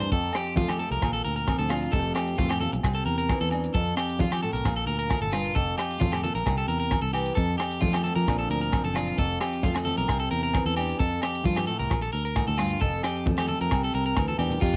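A slightly broken-up electric guitar sits up front, picking warm arpeggios through an analog delay and setting a sunny highlife mood in this excerpt from a longer piece. Beneath it, a dark nylon-string guitar is fingerpicked in a classical manner, its finger squeaks audible, while a foam-muted fingered electric bass adds a round, direct-and-amped low end. A tight funk drum kit plays dry, with bright cymbals, a tight kick, hi-hat, rim clicks and crash, and it closes with a drum fill at 14.3 seconds. Low-tuned congas played with soft hands stay very quiet, and agogo bells ring in the background from 0.3 seconds, both carrying a small-room sound. The harmony keeps returning to Fadd9, moving between it and Bbadd9, Bb, Cadd9 and C chords. Moderate studio reverb and the character of a home cassette recording give the whole a warm, homespun feel.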